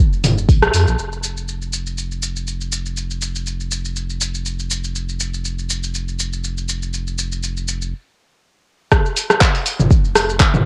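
Hypnotic and earthy, this afro house fragment at 121 BPM with a gentle 16th-note swing sets a round, sine-like sub bass pumping under a layered, tape-softened deep house kit of handclaps, hi-hat, rim click, shaker and toms, while an up-front electronic kick punches a band accent at 0.6 seconds, and after a stop at 7.9 seconds the deep kick returns for the drop at 8.9 seconds, all bathed in a moderate spring reverb with the intimate grain of a home cassette recording.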